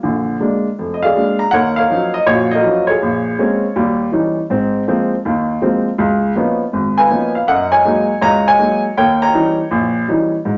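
A roomy studio reverb with rolled-off highs frames this brief fragment of cool, moody solo swing jazz. A baby grand piano, natural and up front with short-sustaining notes, plays alone throughout, ranging from a deep F1 up to Bb5 across rich extended chords such as Ebm9, Ab69, Db13 and Eb7b9. After a short opening phrase, a new section begins at 1.5 seconds and runs until the cut at 10.6 seconds.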